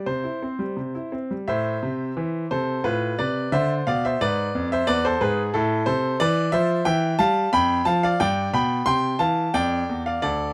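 Close, detailed microphones and a light reverb put a bright, brilliant grand piano up front, playing alone from D2 to C6 in a fragment cut from a longer classical-period sonatina. The mood is playful and elegant, in a 2/4 shaped with rubato, as a brief opening on C gives way at 1.5 s to a longer passage that moves from Am through Bm7b5/A and E before drifting via G9/F, G and C to close on Dm around 9.5 s. The piano's tone stays natural throughout.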